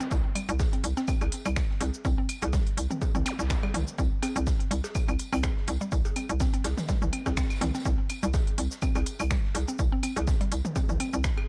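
A dry minimal techno excerpt at 124 BPM with swung 16ths, hypnotic and cool, driven by an up-front punchy analog kick and a hollow, bouncy FM bass on C2 with sidechain pumping, while a woody, round mallet-like synth pluck plays a riff between G3 and C4 through chorus, delay and sidechain pumping over a clicky minimal drum kit of cabasa, finger snaps and hi-hat, with tape-warm electronic claves, cowbell and toms trailing dub echo from 0.4 seconds, a dark, gritty, oversized low-tuned acoustic kit of hi-hat, fat snare and tambourine tucked in the background, and a brief electronic zap at 3.3 seconds.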